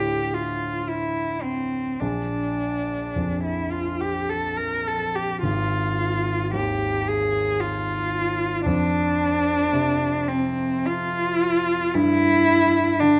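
A large studio's moderate reverb surrounds this luminous, pastoral impressionist duo, heard as an excerpt cut from a longer piece in a slow 3/4 at 54 BPM with uneven, rubato beats. Up front, a single bowed cello carries the melody with a rich, smooth vibrato. Beside it, a grand piano gives clear, present accompaniment in its low register, its notes ringing with long sustain.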